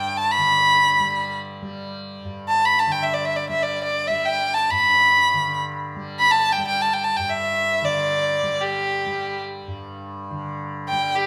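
A moderate recital hall reverb surrounds this meditative, radiant excerpt of Hindustani classical music in free time, set in raga bhupali on G. A single bowed violin carries the melody up front from G4 to B5 with a rich, smooth, even tone and vibrato, while a softly plucked tanpura sounds its buzzing, shimmering drone low beneath it throughout the 11.3 seconds.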